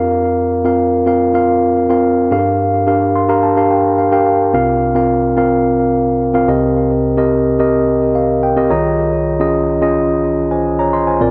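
A mellow tine electric piano plays alone through this short, moody pop fragment cut from a longer piece, its clean, up-front tone carrying a digital delay and sitting in a lush hall reverb. At 108 BPM in a straight 4/4, it moves through chords such as Fsus4, Gm7, Bbsus2/C and Cm7 with a nostalgic air, adding fills around 2.9 and 7.9 seconds. The second passage begins at 4.5 seconds and closes on Dbadd9/C.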